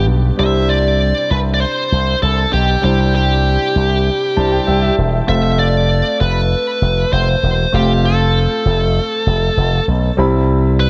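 Glossy and nostalgic, this short cut from a longer 1980s-style pop piece moves at a steady 98 BPM in a straight 4/4. A distorted, high-gain lead guitar carries the melody up front, its picked tone given a shimmer reverb and tape echo. A concert grand piano fills out the accompaniment across a broad range, intimate and polished with deep bass, long sustain and audible action noise, plus its own shimmer reverb, and it adds a fill from 4.1 to 5.3 seconds. Underneath, a punchy slap bass runs through an envelope filter, bright, direct and amped, sitting prominently at the front of the mix. The harmony moves from Cadd9 to F and lands on Cmaj7 at 10.2 seconds, all set in a dark, warm production with light small-room reverb.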